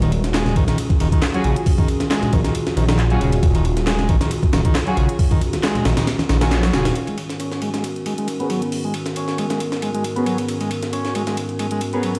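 Breakbeat excerpt in G# minor at 136 BPM with a lightly swung 4/4 feel, energetic and raw, built on a gritty, up-front sampler-style break with a thumpy kick and high-tuned snare, while an overdriven house kit adds handclaps and hi-hat in the background and very quiet bongos and congas play until 6.9 s alongside a swirling, thick phased saw bass. A buzzy vintage combo organ riff runs throughout with low-pass filtering and delay, a warbling, nostalgic tape-like pad holds sustained chords with chorus and sidechain pumping, and dark, lush bowed string stabs with 12-bit grit enter at 1.3 s. A band accent lands at 6.5 s before the harmony moves from D#m11 to G#m11 at 7.0 s, where a filter sweep begins on the organ, all heard as if played on a big sound system in a bare stone room with vinyl crackle.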